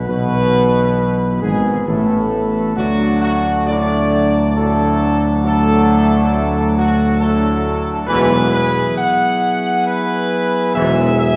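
Classical brass and organ music in a stately triple metre, solemn and majestic, taken from a longer work. A dark-toned trumpet section carries the melody up front with light vibrato over a full chamber organ chorus with audible chiff, while a horn section and a mellow, distant trombone section hold sustained chords in the background, and a smooth-topped solo tuba anchors the bass prominently. The harmony moves from Asus2 to D at 2.8 seconds and to Eadd9 at 8.1 seconds, all set in a wet scoring-stage reverb heard from further back in the room.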